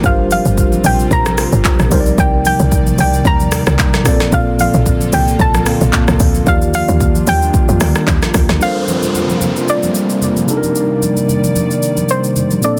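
A late-night, soulful amapiano groove in G minor at 112 BPM opens with a punchy, percussive log drum bass, an up-front produced kit with deep kick, woody snare and crisp hats, clean tine electric piano chords and an airy, breathy pad warbling in the background over Gm7, Cm9, Bbmaj7 and Ebmaj9. A soft, round, dark pluck carries the melody through chorus and digital delay, while thick-skinned congas sit low in the mix behind the 16th-note swing. At 8.6 seconds the log drum drops out and an electronic downlifter plays through the Gm11 to Cm9 change to the end of this excerpt, all within light reverb and a dense, heavily limited modern master.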